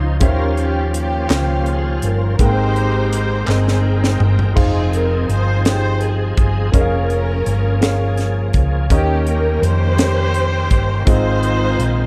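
A slow gospel sway in 6/8 at 55 dotted-quarter beats per minute carries this hopeful, uplifting passage in Ab major, cut from a longer piece. A crisp fusion drum kit, airy and polished with a high-tuned snare and tight kick, sits up front alongside a dark, round hollow-body short-scale electric bass, while a very quiet, close and dry group handclap joins between 1.3 and 3.8 seconds, and a drum fill runs from 3.5 to 4.6 seconds. Over this, a warm studio string section carries the melody with expressive vibrato and portamento, bowed with a smooth top. A clear, woody upright piano with long sustain provides the accompaniment, and a bright, shouting tonewheel organ holds sustained chords through a fast rotary speaker, light overdrive and chorus vibrato. The harmony moves from Eb13 and Abmaj9 into Fm7, Bbm7/F and Eb7 before settling on Ab6, all wrapped in light reverb.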